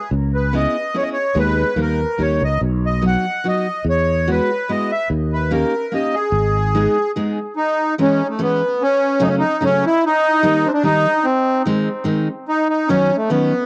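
Recorded at home on cassette with a moderate studio ambience, this short cut from a longer musette waltz feels nostalgic and bittersweet, swinging gently in three. A reedy, sweet accordion with light tremolo tuning carries the melody up front, colored by cassette tape and analog delay. Beneath it a picked steel-string acoustic guitar with an auditorium tone picks out the accompaniment throughout, while a growly, punchy fretless electric bass treated with lush chorus anchors the opening before dropping out at 6.9 seconds, shortly before the harmony shifts to a new minor center.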